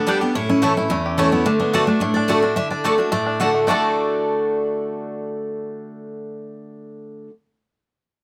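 Bluegrass in D major at a brisk 216 BPM, this rustic, lively excerpt sets a twangy, percussive fingerpicked banjo with plate reverb and a fresh-stringed, up-front picked guitar on melody over a full-bodied dreadnought guitar accompaniment, with woody double-string mandolin stabs entering at 0.1 seconds, all caught by close, detailed microphones in light reverb.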